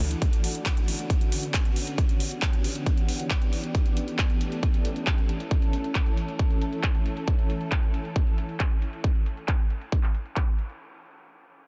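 A straight pulse drives this euphoric uplifting trance excerpt. A punchy, layered electronic kick sits up front from 0.2 seconds, while a big-room dance kit of handclaps and metallic hi-hats plays further back, its hats, snare, cymbals and room muffled by a low-pass filter and swept by a filter throughout. The sound is dry and small-roomed, with a dense, heavily limited modern master.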